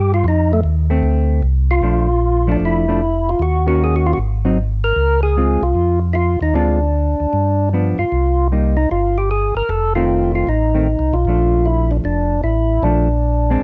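A swung 4/4 groove at 153 BPM drives this bluesy, swinging soul jazz organ trio excerpt in Bb major, moving through a progression that lands on Bbmaj7 at 1.8 seconds. The two tonewheel organs open the cut: a fat, percussive melody voice with third harmonic percussion, key click, slow rotary speaker and plate reverb, over a round, mellow bass line with vibrato and its own slow rotary swirl. The clean, fingered hollow-body electric guitar enters with dark accompaniment at 0.9 seconds, all three up front in a dusky, lightly reverberant mix.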